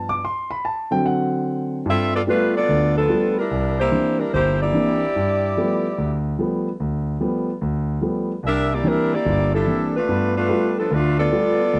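Joyful and energetic, this swinging jazz passage is cut from a longer piece and moves at 146 BPM in 4/4 with a lilting eighth-note swing, in G major tuned to A4 = 442 Hz. A concert grand piano opens alone on a D7 chord, its warm tone and deep bass sitting up front as it plays accompaniment across a span from G1 to D6. At 1.9 seconds a saxophone section enters with the melody, a mellow ensemble sound with light vibrato and a smooth top, placed close in the mix and slightly louder than the piano. The harmony then alternates between G9 and C9 chords, and both parts play through to the end at 11.8 seconds. The sound is dry and close, in a 1970s-style studio with a touch of reverb.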